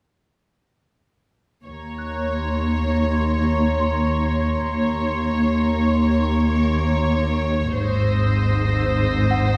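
Tense and eerie, this cinematic fragment at 98 BPM in 5/4 and Eb dorian opens at 1.7 seconds with a lush violin section carrying a narrow, vibrato-laden melody over expressive bowed cellos, woody double basses in the background and an ominous, ring-modulated, rumbling drone, while a higher violin section adds a smooth texture and a delicate, slightly out-of-tune celesta enters at 2.0 seconds, all heard from further back in a reverberant scoring stage as the harmony shifts from Ebm7 to Abadd9 at 7.8 seconds.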